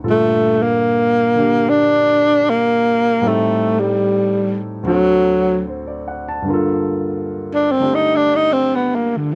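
A breathy, whispered tenor saxophone carries the melody up front in this intimate, melancholic swing jazz fragment, its subtone voice shaped by vibrato, scooped notes and a soft attack, and it takes a solo from 6.5 seconds. Beneath it, a baby grand piano with a natural, long sustain plays the accompaniment over a Gm9, Am7b5 and D7 progression that returns to Gm9. The close, detailed recording has little reverb, keeping both instruments near and clear.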